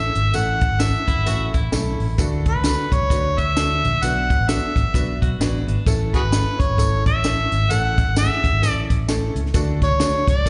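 A gritty, overdriven harmonica leads this short cut of joyful, danceable 1960s-style soul, sitting up front with slapback echo, scooped notes, tongue slaps and a light vibrato in a jazzy solo over a swung 130 BPM groove in A major moving through A, D and B minor. Beneath it, a round, foam-muted electric bass drives the low end, a woody, slightly detuned upright piano comps with short sustain, a compact cocktail kit punches with a high-tuned snare, and a jingly tambourine rides quietly on top. A dark, clean, picked electric guitar adds brief echoed riffs at 1.1 and 5.2 seconds, and the whole performance sounds like a live gig heard through the venue's PA in a recital hall, with a dulled top end.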